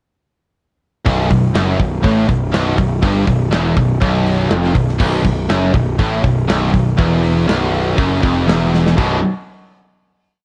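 Heard through worn, warbling cassette tape with a light studio reverb, this short, epic and relentless heavy metal piece runs at 121 BPM in a straight 4/4, built on a riff around B5 from 1.1 seconds. Three bright, distorted, picked electric guitars play single-note riffs in the background, one of them high-gain and one double-tracked, while an up-front, round, overdriven fuzz bass drives eighth notes that double the guitar riff. A tight acoustic metal kit of crash, hi-hat, kick and medium-tuned snare, with vintage 12-bit sampler grit, holds a big rock groove, and its fill at 8.7 seconds leads into a final B minor chord at 9.0 seconds.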